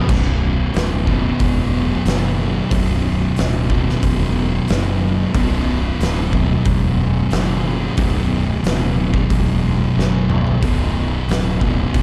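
A brooding 12-second cut of stoner and doom metal opens on two thick fuzz guitars grinding out a riff in B minor, with the full band arriving at 0.1 seconds at a steady 91 BPM in straight 4/4. One guitar carries a warm, picked distorted tone, while the other sits in the background with a darker edge, both working the low register between B1 and B2. A fingered electric bass digs even lower, its bright, growly overdrive pushed direct and amped beneath the guitars. The oversized, low-tuned acoustic kit sits up front, its boomy kick, fat snare, dark cymbals, hi-hat and toms captured in a big, pumping room with a saturated, gritty character. A drum fill from 10.0 to 10.6 seconds breaks the ominous weight of the riff, and the dark production keeps reverb to a minimum.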